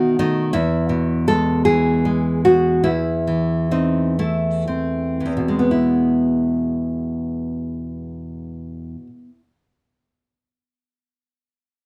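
Romantic solo classical guitar in E major and 6/8, this sunny excerpt finds a fingerpicked nylon-string guitar, up front and warm in light reverb, moving freely at 37-55 BPM and slowing down through its first 5.7 seconds as B7 resolves to E, shades into Am/E, and returns to E before the guitar falls silent at 9.4 seconds.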